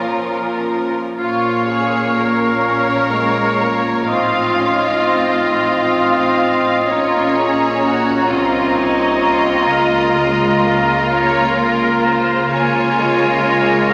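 In a 6/8 with a free, rubato pulse, this slow romantic orchestral movement unfolds in a melancholic, elegiac mood, cut from a longer piece. It opens with strings alone: a clear, intense violin section on a second line, violas with a warm chamber tone in the accompaniment, and a cello section holding the bass in the background. At 1.2 seconds the texture fills out as another violin section takes the melody with lush, smooth vibrato. Around it, a distant, roomy solo oboe and a mellow clarinet carry supporting lines, an airy flute group with crisp attacks sits up high, a very quiet French horn section holds sustained chords, and a double bass section deepens the low end. The harmony moves from a dark minor chord to a dominant seventh and back, while a generous concert hall reverb gives the passage a grave, mournful breadth.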